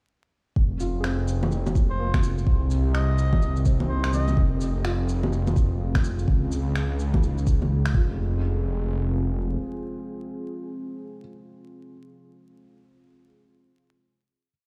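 Wistful and melancholic, this short future garage piece moves at 126 BPM in F minor with a swung sixteenth feel, cycling through Fm, Cm7 and Dbsus2. A deep, muffled two-step kick sits up front beside a skittering shuffled beat of electronic shaker, finger snaps and low bongos, tape-warmed and re-recorded in a small room. Underneath, a menacing detuned saw bass holds sustained roots with a saturated filter swell and sidechain pumping, while a moody, warbling pad with chorus and its own reverb fills out dark sustained chords from 1.8 seconds. A cup-muted trumpet adds short, veiled jazz phrases with light vibrato and tape echo between 1.9 and 4.4 seconds, and a felt-muted upright piano scatters intimate notes in the background, its action noise audible through analog delay. The groove gives way to a final hit at 8.2 seconds, the piano lingering until 14.5 seconds, all heard as if played through a big system in a bare stone room with vinyl crackle.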